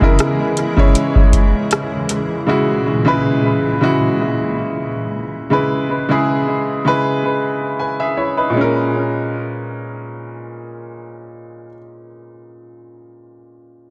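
An echo-heavy mix with light reverb opens this late-night, sensual contemporary R&B excerpt at 79 BPM in 4/4, with a gentle 16th-note swing and tuning set to A4 = 441 Hz. A booming, dry analog drum machine sits up front with a deep kick, metallic hi-hats and rim clicks, but drops out at 2.3 seconds, while a cloudy, detuned granular pad with a slow attack and its own reverb holds blurred, evolving Dbm7 chords until 5.5 seconds. A clear, worn grand piano with analog delay carries the accompaniment up front throughout, moving to Bbm7 at 8.5 seconds.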